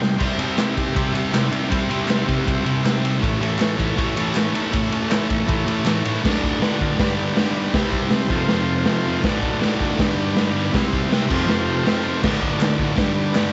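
A drum fill on a punchy, gritty kit kicks off this rowdy, raw garage rock excerpt, with a thick, double-tracked fuzz guitar riff up front and a buzzy vintage combo organ holding sustained chords with light vibrato in the background. Crisp group handclaps join at 0.6 s, drop out at 5.9 s and return at 12.6 s, while the harmony moves from C and A into a repeating D, G, C, F cycle. The sound is a small room with light reverb and a rolled-off, dark top end.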